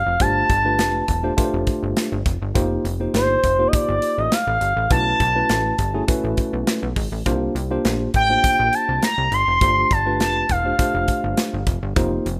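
This rough home demo has a small-room ambience, capturing a short, danceable cut of early-eighties boogie funk at 102 BPM in a straight 4/4. Out front, a smooth, expressive synth lead carries the melody from the start with a resonant, filter-swept sawtooth tone, fast attack, sustained notes, vibrato and chorus, singing between C5 and C6 until 11.7 seconds. Beneath it, a plucky analog bass built from sawtooth and square waves gives punchy, funky, quickly decaying notes in the low register. A clean, warm tine electric piano, heard through its built-in speakers, supplies accompaniment from 0.2 seconds. A polished modern studio kit with an airy, up-front sound brings hi-hat, a punchy kick and a medium-tuned snare. The harmony moves through lush suspended ninth chords, from G9sus4 to F9sus4, B9sus4 and C9sus4 before returning to G9sus4.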